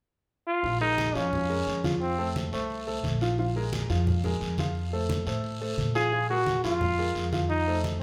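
A brilliant, up-front solo trombone with light vibrato and a vintage pop-style tone carries the melody from 0.5 seconds, drops out at 3.2 seconds and returns at 6.0 seconds in this driving, fiery salsa excerpt, cut from a longer piece. Beneath it, a clear, worn concert grand piano with deep bass and a present sound plays the accompaniment over a woody, thumpy pizzicato upright bass on steel strings, while low-tuned thick-skinned congas sit in the background beside a raspy, band-limited guiro. The band sounds as if it is playing live in one room, bathed in a wet large-studio reverb.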